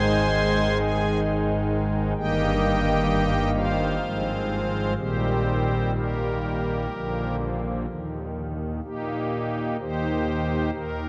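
A slow, rubato pulse in 3/4 at about 63 BPM gives this classical chorale-style excerpt in Eb major a majestic, reverent sway, with uneven beats that breathe freely. A solo pipe organ on its strings celeste stops carries everything from 0.0 to 11.1 seconds, its soft, shimmering, romantic voicing sitting up front and spanning from G1 to C6 through harmonies that move from Ab to a cadence on Bb before settling on Eb at 7.9 seconds. A long cathedral reverb of 5.5 seconds and a dark, warm production wrap the sound in a vast, glowing space.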